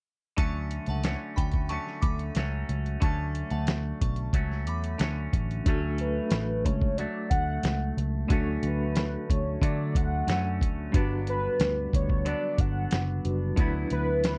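A sunny, nostalgic indie and bedroom pop fragment at 91 BPM in D major opens at 0.4 seconds with muffled, thumpy sampler-style drums, a round foam-muted bass, twangy clean electric guitar with chorus and vibrato, and a glassy FM synth bell with phaser and slapback echo that drops out at 4.8 seconds, before a reedy electric piano with fast tremolo enters at 5.6 seconds and a velvety detuned synth lead carrying the melody joins at 6.0 seconds, all in a dry, close 1970s-style studio sound moving from Dmaj7 to Gmaj7 and settling on D69.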